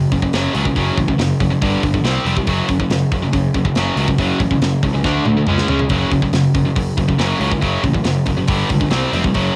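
A straight 4/4 pulse at 140 BPM drives this relentless, dark heavy metal excerpt in F# minor, where a bright, distorted guitar riff sits up front over a second overdriven guitar in the background, a punchy fuzz bass pushes beside them, and a tight, gritty drum kit with a rolled-off top, colored by cassette tape like both guitars, breaks into a fill at 5.0 seconds in this dry home cassette recording.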